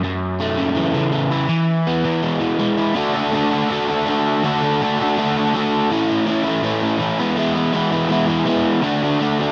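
Carefree yet wistful, this short rock passage, cut from a longer piece, moves at a brisk 163 BPM in a straight 4/4 feel, set in D lydian with tuning at A4 = 439 Hz. A single crunchy overdriven electric guitar carries the whole fragment as a solo voice, picked and double-tracked, sitting up front with a bright, gritty edge. It ranges from F#2 to A4, moving through F#m7 and E before shifting at 3.0 seconds into a passage built on D, A, E and back to D. Light reverb gives the guitar a touch of air. The rough home demo mix lends the recording a loose, unpolished character.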